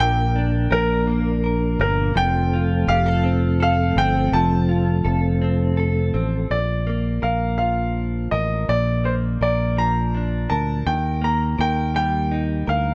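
Romantic and heartfelt, this excerpt from a six-eight pop ballad in Bb major moves at 55 BPM, with a brilliant, up-front concert grand piano carrying the melody over a round, dark fingered electric bass. A bright, compressed clean electric guitar, recorded direct and double-tracked, supplies the accompaniment, while a mellow, flute-like tonewheel organ holds sustained chords through chorus vibrato and a rotary speaker until 6.5 seconds. Light reverb lends the mix a gentle sense of space.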